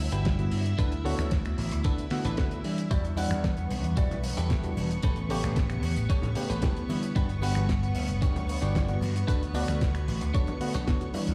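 Nu-disco at 113 BPM with a groovy, sleek feel, this excerpt rides a straight 4/4 pulse from a punchy slap bass and a dry, dark 70s kit of finger snaps, hi-hat and fat snare, soon joined by a thumpy, sampler-style electronic kick sitting up front, while egg shaker and soft-handed congas slip in at 2.9 seconds. A reedy, slightly out-of-tune electric piano with tape echo and a lush sawtooth string machine with ensemble chorus pump against the kick through Gmaj7, Em9 and A9 chords, as a clean, compressed guitar riff with subtle chorus threads through, all heard through the stony reverb of a bare room on a big sound system.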